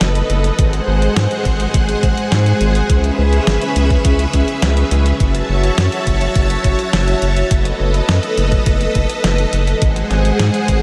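Synthwave at 104 BPM in C# minor, moody and nocturnal, where a lush sawtooth string machine holds sustained chords with ensemble chorus and sidechain pumping over a round, wave-folded analog bass that also pumps, while a clean 12-bit drum machine plays hi-hat and a fat snare, a thumpy electronic kick joins at 0.6 seconds, and a huge ambient reverb soaks the whole dreamy mix as the chords move through B7/F#, G#7, C#m7 and F#m7 in this excerpt cut from a longer piece.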